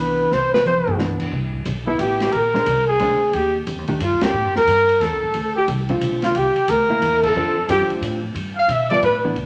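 Small-group swing and bop jazz in a lilting 3/4, this sophisticated passage is cut from a longer piece, with a mellow alto saxophone carrying the melody over a breathy, whispered trumpet second line that sits up front and intimate, both shaded with vibrato. A clean, compressed hollow-body electric guitar supplies dark accompaniment, a woody, thumpy pizzicato upright bass anchors the low end, and a smooth acoustic drum kit with a boomy kick enters at 0.3 s with a fill. Band accents land at 4.2 and 7.2 seconds, and moderate large-studio reverb gives the ensemble a roomy glow.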